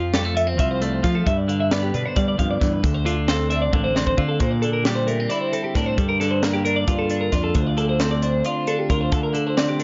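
A dry, close recording with a dark top end and little reverb opens this short excerpt cut from a longer math rock and midwest emo piece, wistful and restless in D minor. It moves in 7/8 at 267 BPM counted in eighths, with a straight feel. Two clean, twangy twelve-string electric guitars sit up front, one picking out chords in the low and middle register while the other picks bright arpeggios higher up, moving through Fmaj7, G7 and Dm7. A growling fingered electric bass with overdrive grounds the harmony, and a crisp fusion drum kit with a high-tuned snare, tight kick, hi-hat and toms plays with a polished, airy studio-room sound. A drum fill at 3.7 seconds leads into the second section at 4.4 seconds, where the chords shift to Bb69, Gm9 and back to Dm7.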